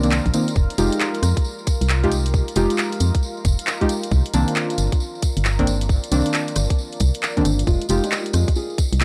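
This late-night, skippy two-step garage excerpt opens at 135 BPM in F dorian with soft, warbling chord stabs moving between Cm9 and Fm9, carried by chorus and analog delay over a hollow, organ-like FM bass that sits up front. A layered electronic garage kit of handclaps, hi-hat and rim click swings alongside a jingly, close tambourine, with a tight kick joining at 0.3 seconds while a moody, detuned ambient pad pumps in the background with chorus and reverb. At 7.7 seconds a small, thumb-plucked nylon-string guitar enters, all within a dry, gritty cassette-tape sound.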